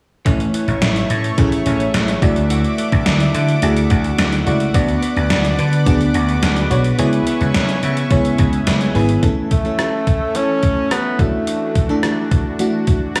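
A straight 4/4 beat from a gated, overdriven digital drum machine with a thumpy kick and an up-front punchy, amped slap bass, heard until 9.2 s, anchor this glossy, uplifting 1980s-style pop excerpt, while glassy, bell-like FM electric piano and a lush, detuned sawtooth pad with chorus carry the chords, a clean, direct-recorded electric guitar riff with subtle chorus and digital delay sits in the background, and a breathy, mellow tenor saxophone with light vibrato and scooped notes takes a solo from 9.5 s.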